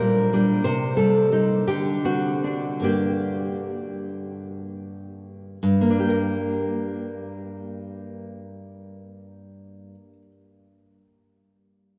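A bright, fingerpicked nylon-string guitar sits up front in this passionate, intimate romantic piece for solo classical guitar, moving in a supple, rubato 6/8 that slows through the opening 5.6 seconds. The guitar plays alone from the start until 10.4 seconds, its lines blooming into a long cathedral reverb that places it in a vast, echoing space. This fragment of a longer work ends during its second section.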